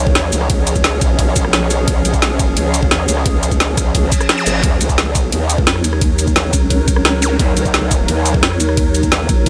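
Dark technical drum and bass at 174 BPM in Eb minor, this short cut from a longer piece feels mechanical and aggressive, moving from a Db chord to Ebm7 at 4.6 seconds. A swarming, detuned drone of sustained chords sits underneath, slow to bloom and granular, its built-in reverb and sidechain pumping giving it a tense, evolving breath. Up front, a growling bass wobbles through a formant filter with chorus and overdrive, saturated and compressed, pumping with its own sidechain. The layered electronic drums bring an overdriven knocking kick and an up-front kit of woody snare, bright hi-hats, ride cymbal, rim click and shaker set in a small room ambience. A reverse cymbal rises into the chord change, from 5.7 seconds a second, nasal vowel-sweep wobble bass adds a resonant, mellow voice of its own, and a brief zap cuts in at 7.2 seconds, all under a light overall reverb.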